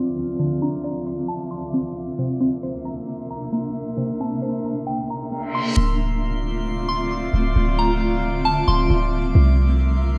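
A hazy, low-passed home-demo sound with light digital ambience frames this ethereal half-time hip hop excerpt at 134 BPM in D minor, moving between Dm7 and C7. A cloudy, evolving granular pad and a drifting, bright glass-harmonics texture sustain throughout, while a crystalline wavetable pluck with chorus and digital delay plays arpeggios under a filter sweep until 5.8 seconds, and a soft, warbling FM bell carries the melody from 0.6 seconds. A brief electronic reverse cymbal leads into the second section, where a deep, boomy, clean 808-style bass enters up front at 5.8 seconds.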